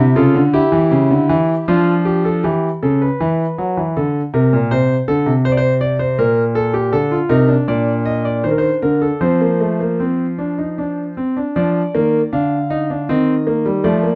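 Classical baroque-style three-part fugue for solo grand piano, contemplative and serious, moving at an unhurried 79 BPM in 3/4 with a straight feel. Cut from a longer piece, it opens in D minor over diminished-tinged harmony before turning to Bb major at 6.9 seconds. The concert grand sits up front with a clear, natural tone, deep bass and long sustain, set in light reverb within a dark production.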